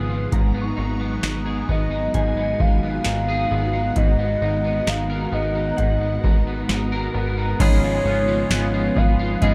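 A straight 4/4 pulse from a booming, up-front analog drum machine, with deep kick, crisp snare, metallic hats, tambourine and crash, carries this melancholic, ethereal dream pop excerpt: a plucky, funky analog bass anchors the low end, a hollow, woody clarinet-like synth lead with vibrato, chorus and tape echo carries the melody over sustained, organ-like ensemble string chords and picked arpeggios from a slightly broken-up electric guitar, a shimmering FM bell glints in the background, and a bright, clean, twangy guitar with tremolo joins at 7.6 s as the harmony shifts, set in a dark production with light reverb.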